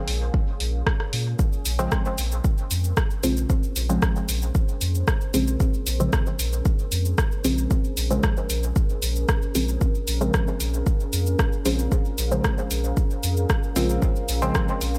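A straight 4/4 pulse at 114 BPM drives this hazy, deep dub techno excerpt in Bb minor: an up-front electronic kick and a tape-warm deep house kit of cabasa, hi-hat and rim click sit over a round, soft sub bass of triangle and square waves, while a dark, detuned sawtooth pad holds sustained chords with chorus and reverb, a bubbling, resonant stepped-filter texture murmurs in the background until 1.4 s, and from 1.8 s a muted sawtooth chord stab plucks through phaser and dub echo, with the pad, bass and stab pumping to the sidechain as Bbm7 gives way to Bbm9 in a fairly dry mix.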